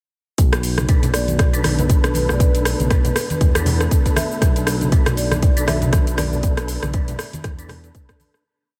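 From 0.4 s a punchy four-on-the-floor electronic kick drives this afro house piece at 119 BPM in B minor, together with overdriven, programmed afro-pop kit hats, rim clicks, shaker and toms on a swung sixteenth feel, soft-handed congas set back in the mix, and a smooth, tube-saturated synth bass of long gliding notes with sidechain pumping. From 0.9 s a mellow, percussive tonewheel organ adds syncopated, close-voiced chord stabs through a fast rotary speaker with chorus vibrato and delay. At 1.1 s a marimba follows with background call phrases with delay, and from 1.2 s a very quiet, moody analog pad holds sustained chords under light digital reverb. The mood is warm and spiritual, with the whole piece played as a drop that fades out from 5.8 s.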